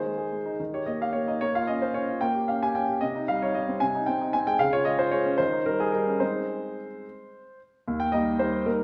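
A straight 6/8 at 74 BPM in dotted quarters carries this playful, elegant classical-period piano sonatina excerpt in Ab major, where a solo concert grand, up front with deep bass and a natural tone spanning Eb2 to Ab5, moves through Ab/Eb, Eb, Bbm, Gdim/Bb, Cm, Ab/C, Db and Eb7 to settle on Ab at 6.2 seconds before turning to Eb at 7.9 seconds, all bathed in the wet reverb of a recital hall.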